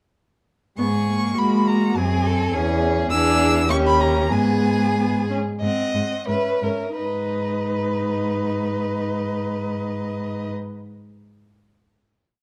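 A dark production with moderate large-studio reverb frames this complete, quick classical-period movement for string quartet in G# minor, urgent and dramatic, in 2/4 at 84-106 BPM with a rubato feel. The clear first violin sings the bowed melody with vibrato, repeated notes and sustained chords, while the focused second violin, up front, adds independent inner lines and chords in the rhythm of the tune. The rich viola fills in with sustained chords and answers at phrase ends, and the smooth cello, also up front, walks and sustains the bass with passing and repeated notes, as the music slows from 3.7 s into a short coda at 5.6 s and a final G# minor chord from 7.0 s.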